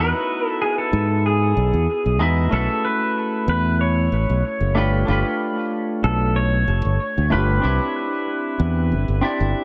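A blissful, sunny stretch of sunset chillout, cut from a longer piece, opens with all three parts at once. A clean pedal steel guitar, played with fingerpicks and slide and shaped by volume swells, carries the melody through tape echo, over a warm, picked semi-hollow electric guitar feeding an analog delay and a punchy, up-front fingered electric bass. The lightly swung groove moves from Emaj7 through B9sus4 and G9 to Cmaj9, while moderate spring reverb and an echo-heavy mix give the whole a glowing, spacious halo.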